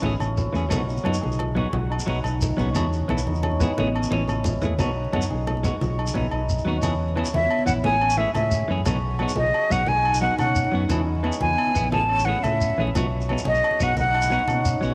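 Joyful and warm, this highlife guitar band groove rolls along at 118 BPM in a straight 12/8, cut from a longer piece and captured as a home cassette recording with light reverb. A clean, picked electric guitar carries the accompaniment through spring reverb and tape coloring, while a hammered cimbalom adds shimmering arpeggios touched with tape echo, and a dark, round fingered electric bass gives the low end a punchy, amped weight. Underneath, bright low-tuned congas and ringing agogo bells sit in the background, joined by a grainy, mellow shekere. The harmony moves between Amaj7 and B, and after a drum fill at 6.3 seconds the second section brings E into the cycle. At 7.3 seconds a breathy jazz flute enters up front with a soft attack and vibrato, its close-miked tone tinged by tape echo as it carries the melody to the end.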